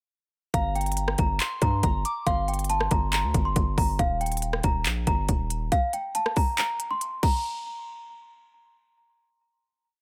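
Brooding and menacing, this short, complete trap piece runs at 139 BPM in a half-time feel in G minor. A delicate, bell-like small celesta carries the looping melody, close-miked and bright with a touch of delay, repeated like a sampled loop from 0.5 seconds until 8.7 seconds. A soft, pure FM synth bell with chorus and delay adds a sparse, mellow counter-melody that sits quieter and drops out at 3.5 seconds. Underneath, a hard-hitting, saturated 808-style bass with a noise layer plays long sub-bass notes that follow the kick, with pitch slides, while an up-front electronic trap kit drives a half-time beat of hard-clipped kick, crisp hats with fast rolls, handclaps, rim clicks and crash cymbal. The kick drops out just before the hook ends at 7.4 seconds, and the celesta rings on alone into the final hit, all in a dry, close sound.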